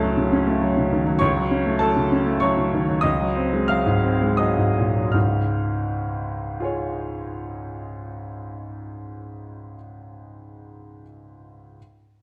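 Sparkling and brilliant, this short cut from a longer classical piece is a virtuoso piano study in 3/4 with a free, rubato feel. A clear baby grand piano plays alone throughout, ranging from Db2 up to F6, its natural tone sitting up front with long sustain. The opening phrase slows from 0.3 to 5.1 seconds as the harmony moves from Gbm over Db to Ab7 over Db, then settles onto a plain Db chord as the second section begins at 5.1 seconds. A moderate recital hall reverb gives the notes a sense of space, while the production leans dark and warm. The passage runs to 11.8 seconds before being cut off.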